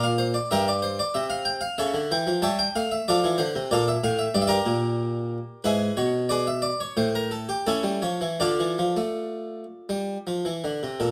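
Serene yet dance-like, this short passage from a baroque-style suite movement is played on a solo harpsichord in D minor, tuned to A4 = 444 Hz. It moves in 4/4 with a flexible, rubato feel, its pulse drifting between 77 and 98 BPM. The close-miked, up-front harpsichord has a brilliant, plucked Italian-style tone, with octave strings adding fullness across a range from G2 to A5. The harmony passes from G minor through A7/C# and E/G# before a brief chordless moment at 7.0 seconds, then resolves through A7 to D minor at 8.4 seconds. A moderate studio reverb surrounds the instrument, and the 11.1-second passage is cut from a longer piece.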